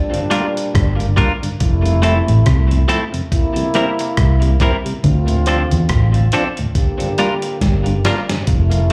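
A roots reggae groove with a lightly swung sixteenth feel sets a sunny, uplifting mood in this short live-club excerpt. A gritty sampler-style drum kit with a thumpy kick and fat snare sits up front beside a dark, round, foam-muted fingered bass, while a bright, punchy trombone section carries a second line over a clean, twangy electric guitar and a mellow tonewheel organ with slow rotary swirl and key click in the background. A very quiet hollow-body guitar picks a low riff. Tape and slapback echo touch the horns, organ and clean guitar, and a drum fill arrives at 7.6 seconds, all heard through the venue's PA in club reverb.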